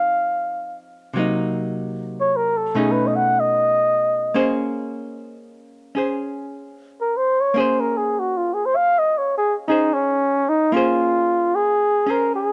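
A muted trumpet and an archtop guitar begin together in this smoky, melancholic jazz ballad in Bb minor, cut from a longer piece. The tempo is a slow 75 BPM in 4/4, with a gentle swing on the eighth notes. The trumpet, played through a bucket mute, carries the melody as a solo until 10.7 seconds, its veiled, mellow tone shaped by vibrato and scooped notes. Beneath it, the hollow-body electric guitar supplies clean, picked accompaniment with a dark, miked-amplifier color, moving through chords such as Fm7, Cm7b5, B9 and Bbm9. Both instruments sit up front, with the trumpet more prominent, and light reverb adds a touch of space around the smoky mood.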